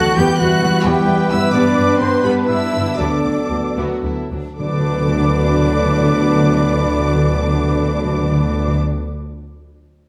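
A lush violin section carries a vibrato-rich melody over a background second violin line, airy flute, distant oboe, very quiet violas, dark horn and bright trombone chords, ringing thumb-plucked harp arpeggios, woody cellos and smooth double basses in this heroic, adventurous cinematic excerpt in D major and 6/8 at 70-89 BPM, with a present classical trumpet adding stabs from 0.2 s and hard-mallet calf-head timpani entering at 3.0 s as the tempo slows through Em, G and D6 in a recital-hall reverb.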